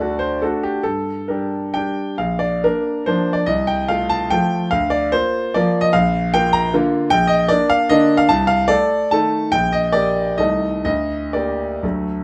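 A clear, close and detailed recording places a solo concert grand piano up front in a light reverb. The piano's tone is smooth and vintage, with a deep bass reaching down to Bb1 and lines rising as high as Bb5. The music is a romantic classical dance in triple time, built on dotted rhythms and shaped with free, elastic rubato that gives it a nostalgic yet capricious mood. A brief opening phrase gives way at 2.2 seconds to a longer passage that drifts from its bright major footing toward a darker minor colour from 7.1 seconds. This twelve-second fragment, cut from a longer piece, closes on a minor harmony.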